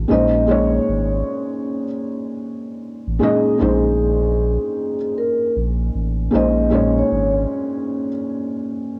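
The felt-muted upright piano is soft and dark, with audible action noise and a short sustain from its thick felt, sitting up front with cassette tape coloring its accompaniment from 0.0 to 9.0 seconds. This is a melancholic, reflective lo-fi hip hop excerpt at 77 BPM in 4/4, with a swung sixteenth-note feel in Bb minor, resting on a Bbm11 chord. Beneath it, a round, sine-like sub bass with a fast attack and sustained tone holds down the low end up front until 7.5 seconds. A vibraphone played with soft mallets and its motor off carries the melody from 0.1 to 7.3 seconds, metallic and ringing yet smooth, also tinted by cassette tape. The sound is dry and close, a home recording on cassette cut from a longer piece.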